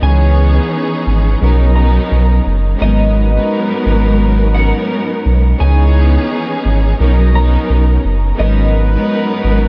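A lush, bowed string section with cassette-tape colour and a round, deep sine sub bass open this tough, reflective hip hop excerpt at 86 BPM in G# minor, with swung 16ths, while a slightly broken-up, dark electric guitar melody with analog chorus and a mellow jazz-style horn section's stabs with diffuse ambient delay sit in the background over C#m9, Bmaj9 and G#m11 chords in a small room.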